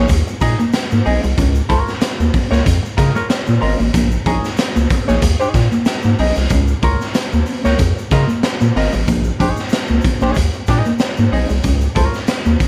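A dry, close-up mix carries this sly funk excerpt at 94 BPM in Bb minor, swinging lightly on sixteenths as it moves between Bbm11 and Db6 chords. A round, deep analog bass sits up front beside a gritty, lo-fi garage drum kit with a punchy kick, while a dark, hollow-body archtop guitar plays clean accompaniment through wah and a mellow, fingered electric guitar riff sits in the background with ensemble chorus. A grainy egg shaker sounds faint and distant from about 0.1 seconds onward.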